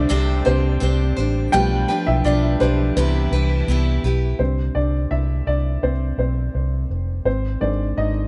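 Pop in C major at 84 BPM with a warm, anthemic mood, this brief excerpt from a longer piece features a dark, worn upright piano soloing with tape echo, woody action noise and a slightly detuned, boxy tone, over a round, foam-muted electric bass up front, while a picked steel-string acoustic guitar riff and lush, distant bowed strings holding sustained chords play only through the first 4.4 seconds, all set in an echo-heavy mix with light reverb and moving from Csus2 through G7/B and Cmaj7 to a closing Ab.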